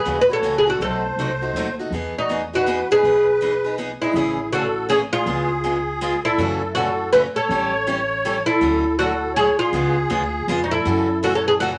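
A bright, plectrum-plucked fretless oud sits up front with the melody in this swinging, charming jazz manouche waltz, cut from a longer piece, with the harmony shifting into a new section at 4.2 seconds. A reedy, shimmering musette accordion, close-miked and dry, carries a second line, while a boxy parlour steel-string guitar picks the accompaniment and a woody, thumpy pizzicato upright bass on gut strings anchors the low end. The ensemble sits in a moderate studio reverb with a softened top end.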